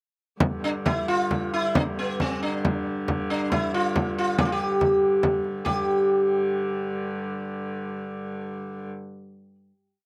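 Dry and open-air, this complete festive medieval dance in 6/8 has an ancient feel and gathers speed as it goes. A bright, buzzing sitar sits up front with a round, shimmering modal melody full of ornaments and a slapback echo, while a close, hard-handed frame drum keeps an evenly spread pattern until 5.9 seconds. Beneath them a dark, woody hurdy-gurdy drones from a distance, and the piece settles onto a final chord from 5.7 seconds.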